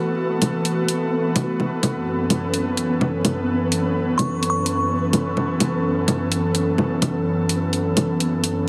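Heavily compressed and radio-like under vinyl crackle and a huge ambient reverb, this rainy, nocturnal future garage excerpt at 127 BPM with a swung 16th feel places an airy, breathy, detuned pad with chorus and vintage sampler grit up front beside overdriven, layered electronic hi-hat and bongos, while a flickering granular texture hovers in the background and a glassy FM synth bell with tremolo and dub echo rings out briefly at 4.2 seconds over chords moving from F#m11 to Aadd9/F#.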